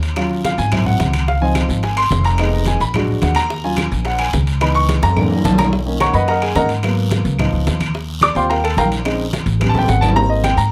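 Sophisticated and fiery, this short excerpt of Afro-Cuban jazz in Eb minor moves at a brisk 216 BPM in a straight 4/4 feel. A baby grand piano sits up front with a natural, warm tone, carrying a solo across the whole passage while harmonies shift through rich chords such as Ebm9, Dbmaj9, Bmaj9 and Eb69. Beside it, a plucked upright bass with steel strings gives a growly, thumpy, woody low end, also close and prominent. The percussion bed is layered: low-tuned congas with a thick skin and tight, high-tuned bongos played with soft hands sit in the background, along with vintage, band-limited claves, while a raspy guiro sounds close and ringing metal-shell timbales come from a distant, large room. Drum fills arrive at 4.9 seconds and 9.7 seconds, and light reverb ties the ensemble together.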